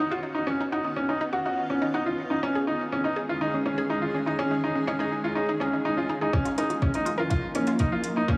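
A straight 4/4 pulse at 123 BPM drives this melancholic, moving piano and strings electronica excerpt in Eb minor, where an up-front, brilliant, worn baby grand piano riff floats over a cloudy, evolving granular pad and a round, detuned analog pluck arpeggio set in the background, both pumping with sidechain and bathed in shimmer reverb, as the chords move from Badd9 through Dbsus2 to Ebsus2 and a build-up at 6.3 s brings a filter sweep on the pad along with a soft electronic kick, then smooth hi-hats from 6.5 s, kick and hats both overdriven, inside a huge ambient reverb.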